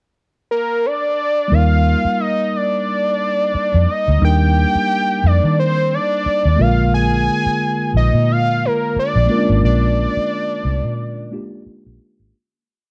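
Dark, lightly reverberant production frames this lush, smooth 1970s-style soul piece at 89 BPM in Eb major with a swung 16th feel, where a fat, detuned sawtooth analog lead with sub octave, filter sweep and vibrato carries a sustained, motif-based melody from 0.5 seconds, a mellow tine electric piano plays clean held drop2 chords with grace notes through built-in speakers, and an up-front, round, foam-muted fingered electric bass plays a melodic line with muted ghost notes over Ebmaj7 and Bb7 until a fade-out that begins at 9.6 seconds.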